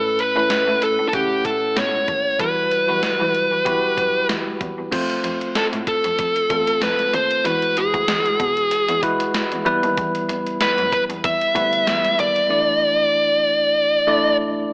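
Romantic and nostalgic, this 1980s-style pop excerpt at 95 BPM sets a dark, fuzzy, picked lead guitar up front over a bell-like tine electric piano, a nasal, bowed cello with vibrato and portamento sitting in the background, and a thumpy, sampler-style 12-bit drum machine with gated reverb, all heard through a plate reverb and an AM radio sound, with the drums entering at 0.2 seconds and the cello stopping at 12.4 seconds as the chords move from Aadd9 to a closing Asus4/E.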